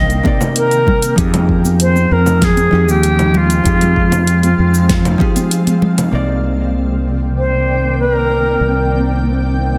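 Warm and smooth, this sunset chillout cut from a longer piece moves at 97 BPM in C minor, with a distant, pure wooden baroque flute carrying the melody through digital delay over a dark, clean hollow-body jazz guitar with tape echo and a shimmering, ethereal pad that drifts between Cm9 and Fm9. An up-front fretless electric bass anchors the low end, while a tape-warm deep house kit with a fat snare, cabasa and hi-hat, a deep electronic kick and close, dry congas in the background drive the groove until they fall away between 5.3 and 6.1 s. A lush hall reverb and a dense, heavily limited modern master give the whole piece a polished glow.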